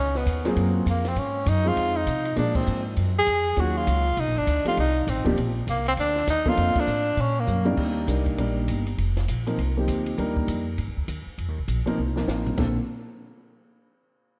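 Soaked in lush hall reverb for a dreamy sound, this playful small-group swing excerpt at 200 BPM in Bb major opens with a breathy tenor saxophone carrying the melody with vibrato, scooped notes and tape echo until 7.7 seconds, over woody pizzicato upright bass, an intimate grand piano with audible action noise, and a dry compact cocktail kit with dark cymbals, a high-tuned snare and a punchy kick that plays fills at 7.5 and 12.0 seconds.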